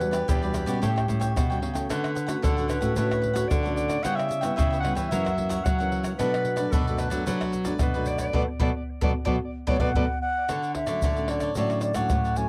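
This cut from a longer piece has the slightly hazy sound of a home cassette recording made in a small booth with a modest, short ambience. It is a lively, sunny blend of samba and choro at 112 BPM in 4/4 and B minor, moving through Em9, A13, Dmaj7, C#m7b5, F#7 and Bm7. A clear, classical-style clarinet with a soft attack takes a solo through the opening, sitting distant and roomy in the mix with a tape echo. Beneath it, a bright, crisply picked cavaquinho and an up-front, full-bodied fingerpicked nylon-string guitar, with audible finger squeak, carry the accompaniment, while a second, dark, thumb-plucked nylon-string guitar holds the bass line. A close, dry percussion section of pandeiro, tube shaker, tamborim and tight surdo, played with soft hands, sits up front, and the band adds an accent near the end of the first section. At 9.7 seconds an airy wooden baroque flute with vibrato and a crisp attack enters with the melody, carrying a cassette-tape colour, just before the music moves into a new section on Dmaj7 at 10.5 seconds.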